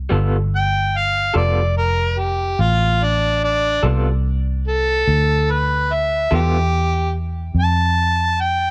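A dark, round, foam-muted electric bass opens this rollicking, soulful blues at 48 BPM in 12/8 and G mixolydian, joined at 0.1 s by a slightly broken-up, lo-fi electric guitar through a small old amp, with tremolo and plate reverb, on a G7sus2 chord until 6.6 s, while from 0.6 s an up-front, mellow harmonica with overdrive, plate reverb, light vibrato and scooped notes takes a jazz-style solo in this excerpt cut from a longer piece.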